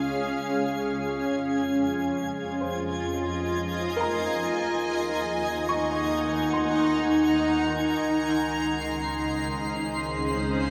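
A cloudy, blurred granular pad opens this serene ambient piece. It sits up front, holding full-bodied, detuned chords with a slow attack and long release that keep it evolving. A felt-muted upright piano, a bowed chamber double bass section and a twinkling granular texture all fade in across the full 10.7 seconds. The piano stays in the background, its soft, mellow arpeggios carried by delay and shimmer reverb. Beneath it, the dark bass ensemble sings low with vibrato and portamento, while the sparkling FM texture glints high above with an octave-up shimmer. In an unhurried triple metre, the harmony moves from Db through Fm7 and Ebm to Dbmaj7, all bathed in a huge, wet reverb with a 7.3 second tail.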